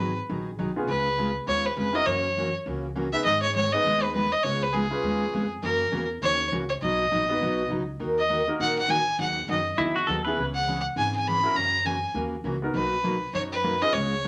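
A bouncy swung four-beat drives this cheerful, down-home western swing, where an up-front, biting fiddle with light vibrato carries the melody over full-bodied picked acoustic guitar, woody pizzicato upright bass and a polished upright piano that joins at 0.8 s, while a clean, fingerpicked pedal steel guitar slides in briefly at 9.8 s with a short second line, set in a moderate studio ambience.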